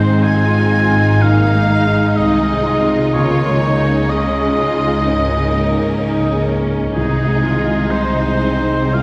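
From the first moment, a tender, moving cinematic passage in Ab major unfolds at a rubato 63 BPM, with a distant, intense violin section carrying the melody beside a clear solo oboe with light vibrato, while a focused second violin section, smooth-topped violas, a worn grand piano with long sustain, ringing fingerpicked harp arpeggios, very quiet cellos and woody double basses fill out the harmony and bass beneath a wet concert-hall reverb heard from further back in the room.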